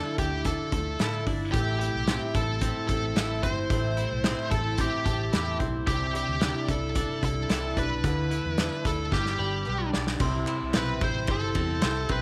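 Nostalgic and youthful, this jangly indie pop excerpt moves at 111 BPM in C major, with a dark, distorted lead guitar up front carrying the melody over a shimmering, octave-doubled picked twelve-string acoustic and a clean, compressed twelve-string electric playing arpeggios with subtle chorus. A round, foam-muted vintage bass and a loose indie kit with a tight kick and a small, pumping room sound enter at 0.2 seconds, moving through Dmadd9, Am7, Cadd9 and G before a drum fill lands on C. At 10.2 seconds a mellow, bell-like glockenspiel joins softly in the background, joined by crisp, very quiet group handclaps, all set in light reverb.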